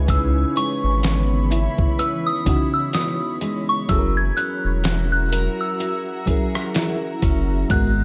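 A deep, round analog bass anchors this moody, late-night contemporary R&B excerpt at 63 BPM with a light sixteenth-note swing, alongside a mellow phased FM electric piano, delayed full-bodied picked acoustic guitar arpeggios and a blurred, bright granular pad from the start. At 0.1 s a gritty, tape-warm sampler-style drum kit with a thumpy kick, rim clicks, snare and hi-hat joins, together with a soft, pure synth bell melody with chorus and delay, all moving from C#m7 to F#7 in a light digital ambience.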